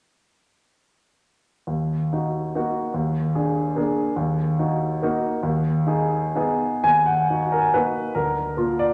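Nostalgic and wistful, this short cut from a longer romantic classical piece is a triple-time dance with dotted rhythms and a supple rubato feel, played by a solo grand piano, smooth, vintage and up front with long sustain, from 1.7 to 8.9 seconds, set in a recital hall whose reverb lends the music a lingering bloom.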